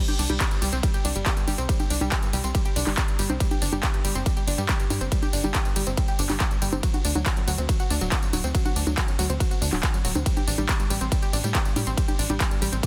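A layered big-room dance kit of handclaps, congas, tambourine, ride cymbal and metallic hi-hats is joined by a punchy electronic kick up front at 140 BPM in a straight 4/4. This short cut from a longer uplifting trance track has a soaring, uplifting mood. Beneath the drums, a tight sequencer bass drives in the low register, its dark filtered pluck blending sawtooth, square and triangle tones, with a fast attack and a decay that pumps against the kick. Over it, an analog pluck plays arpeggios from F#2 to G4, warm and round with a sub octave, bathed in chorus and delay and pumping in the same way. The harmony moves from G5 to D at 6.8 seconds and arrives on A7(no3) at 10.3 seconds. Light reverb surrounds a dense, heavily limited modern master.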